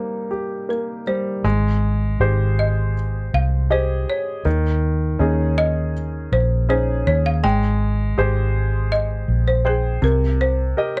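This dry, close recording has a 1970s studio character and carries a heartfelt, emotional pop ballad cut from a longer piece. A woody, rustic folk marimba with medium hard mallets plays the melody with a slapback echo, while a clear, polished grand piano with audible action noise and short sustain provides the accompaniment from the start. At 1.4 seconds a dark, round, foam-muted vintage electric bass enters, punchy and up front, as the harmony settles on Abmaj7 before passing through Eb7sus4 and returning.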